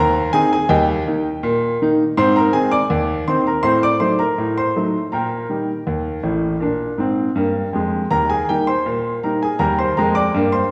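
A clear, smooth grand piano sits up front in a church or concert hall, its short sustain trailing into a wet, spacious reverb. This is lively, jaunty ragtime in Eb major at 81 BPM in a straight 2/4, with the piano tuned slightly low to A4 = 439 Hz. The solo piano covers a broad span from A1 to D6, carrying its vintage tone from deep bass up into the high treble. Across the 10.7 seconds, the harmony moves from Ab to Eb and back to Ab, then steps through Adim7 and Eb/Bb to Bb before resolving home on Eb. It plays as a single passage cut from a longer piece.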